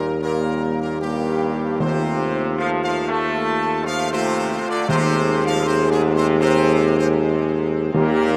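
A vast, echoing space surrounds this short classical brass passage, its huge reverb letting every chord hang long in the air. At a stately 78 BPM in 4/4, the mood is solemn and regal, moving over an Eb bass from Eb to F/Eb and then Ab5/Eb. A close-miked, mellow trumpet section carries the melody with light vibrato, while a clear, slightly vintage trombone section and a distant, roomy French horn section beneath it hold sustained chords. The tuba sits up front, its warm, steady Eb anchoring the whole ensemble from the start. Timpani struck with soft mallets on calf heads enter at 1.8 seconds, adding a round presence on Eb in the background until the passage is cut off at 8.4 seconds.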